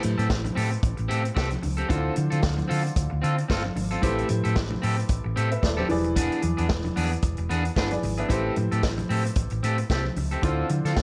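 This driving, danceable disco excerpt opens with every part sounding together at 112 BPM in 4/4, its sixteenths given a light swing and the harmony circling in A minor through Am7, Dm7 and E7. A vintage acoustic drum kit sits up front, with a tight kick, a medium-tuned snare, and hi-hat carrying a rolled-off, natural studio-room tone. Beneath it, a hollow-body short-scale electric bass played with the fingers sounds dark and round, the loudest part in the mix, ranging from D#1 to D3. An electric guitar at the edge of break-up adds picked, twangy accompaniment bathed in spring reverb, while a baby grand piano supports the chords with a warm, natural voice and steps forward with a brief fill at 7.5 seconds. Congas with a bright, thin skin and a compressed, saturated edge tap along in the background, all of it set in a small room ambience.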